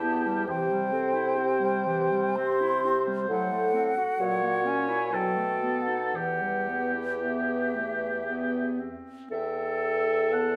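A hollow, pure-toned silver flute carries the melody with vibrato and tongued notes, sitting close and clear above the rest of this elegiac, yearning slow romantic movement for wind quintet. An oboe with its own vibrato sings a second line that sounds more distant and roomy. Beneath them, a bright clarinet with a soft attack and a dark French horn with a smooth top share the accompaniment, the horn sitting in the background. A warm bassoon with light vibrato anchors the bass with a present, forward sound. All five instruments play together through the whole 10.6-second fragment in a flexible, rubato triple metre, moving through a yearning chromatic progression that settles on E minor at 6.2 seconds. A recital hall reverb adds a wet, resonant glow around the ensemble.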